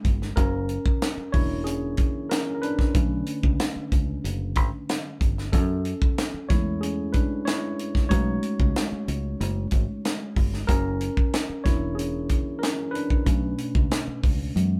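A worn, slightly out-of-tune tine electric piano takes the solo through a combo amp, sitting up front with a clean tone over rich chords such as F#7b13, Bm9 and a rootless B13 in this smooth, cinematic slice of lush 1970s-style soul in F# minor at 93 BPM. Beneath it, a foam-muted fingered electric bass gives a punchy, direct low end, while a tight funk drum kit, natural and acoustic with a high-tuned snare and tight kick, sits forward in the mix. The band plays live together in one room with light reverb, and the recording is cut from a longer piece.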